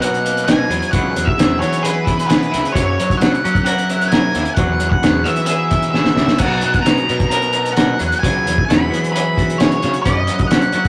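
This jangly, upbeat indie rock excerpt opens with the full band at once, moving at 132 BPM in a straight 4/4 over a cycle of Bmaj7, Eadd9 and F#7 chords. Up front, an octave-fuzz lead guitar carries the melody with a dark, distorted, picked tone, while a cloth-damped drum kit thuds beneath it with a fat snare, tight kick, muffled cymbals and a gritty, lo-fi, rolled-off character. A growly, punchy fuzz bass anchors the low end, and a biting overdriven guitar plays a riff alongside a very quiet, bright, clean twangy electric guitar riff. Deep in the background, a smooth analog pad holds sustained chords with a slow attack, long release and mellow chorus. A brief drum fill arrives from 6.0 to 6.4 seconds, and the whole take has a rough rehearsal-room sound with tube saturation and moderate reverb.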